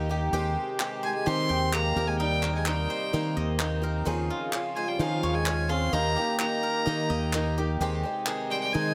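A straight 4/4 pulse carries this warm, hopeful indie folk excerpt, built on a round fingered electric bass up front, a boxy, shimmering picked twelve-string acoustic guitar, ringing, silvery zither arpeggios played with fingerpicks, and a brass ensemble holding sustained chords in the background. Crisp group handclaps enter at 0.8 seconds, and at 1.0 seconds a reedy, gut-string fiddle takes the bowed melody while a clear French horn with light vibrato adds a second line. Light reverb surrounds the band as the chords move from Abmaj7/Eb through Cm7/Eb and Dbmaj7/Eb to Eb before returning to Abmaj7/Eb.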